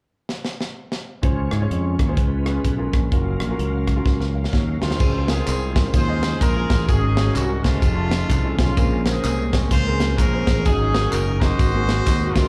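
Uptempo gospel at 127 BPM in 4/4 with a swung eighth-note feel in Db major, this jubilant, uplifting passage is cut from a longer piece and heard as a live gig through a venue's PA with club reverb. A tight funk drum kit opens alone at 0.3 seconds with a fill, its high-tuned snare, tight kick, hi-hat, rim click and crash sitting up front in a small-room sound, with another fill leading into the next section. At 1.2 seconds the growly, punchy fingered electric bass arrives up front alongside a grand piano tucked in the background, intimate and natural with audible action noise and a slapback echo, while a very quiet, reedy tonewheel organ holds sustained chords through a slow rotary speaker with chorus vibrato and key click. The harmony moves through rich chords such as Dbmaj7, Gbmaj7, F7alt and Bbm9 before settling on Ab7sus4 and Ab9 dominants. At 4.8 seconds a distant, roomy horn section takes the melody with light vibrato and slapback echo, and just after, a vintage, band-limited blend of tube shaker and group handclaps joins in the background.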